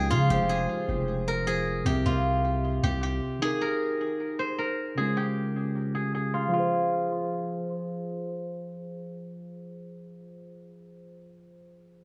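Hip hop in F minor at 154 BPM with a half-time feel, this melancholic, brooding excerpt pairs a bright, silvery steel-string zither melody played with fingerpicks and carrying analog delay until 9.1 seconds, muted felt-like synth keys warbling with chorus and delay through to 12.0 seconds, and a deep, sine-like 808-style bass that sustains only until 3.2 seconds, all set in an echo-heavy, low-pass filtered mix with a small-room ambience over the chords Fm, C, Ebsus4 and Db.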